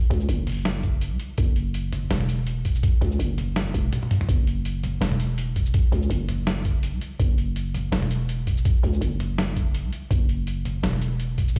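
Played back through a big sound system in a bare room with a large studio reverb, this heavy, tense half-time drum and bass runs at 165 BPM in 4/4 with a light swing on the sixteenths, cut from a longer piece. A growling, buzzy 808-style bass with a fast attack and decaying notes sits up front from 0.1 seconds beside a gritty, pitched-down, tape-warm sampler kit of hi-hat, shaker, medium-tuned snare and toms, which were re-recorded in a small room. A compressed, thumpy electronic kick joins up front at 0.8 seconds, and a brief drum fill lands at 3.9 seconds.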